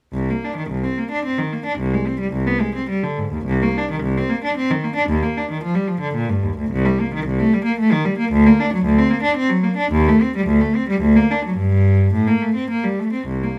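A lone bowed cello opens this baroque-style suite movement, its rich, reedy gut-string tone heard close and up front in a period style, ranging from C2 to D4. The introspective, solemn playing moves in a rubato 3/4 at roughly 102-114 BPM, starting in C minor and turning to G minor from 6.7 s. A moderate large-studio reverb surrounds the instrument in this short excerpt from a longer piece.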